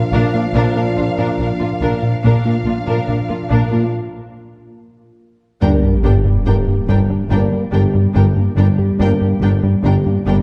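A straight 4/4 pulse at 71 BPM carries this brooding, tense cinematic cue in G minor, a hybrid orchestral and electronic film score, where a close, lush studio violin section sings the melody over a second violin line, an intense viola accompaniment, a very quiet rich cello section, a focused double bass section, dark, distant French horn chords, a ringing harp-like synth pluck arpeggio with chorus and tape echo, and a rubbery square bass riff, until a break at 3.9 seconds gives way at 5.6 seconds to a huge sub drop impact and a mellow tuba as the harmony moves from Bb to Gm, all bathed in wet concert hall reverb.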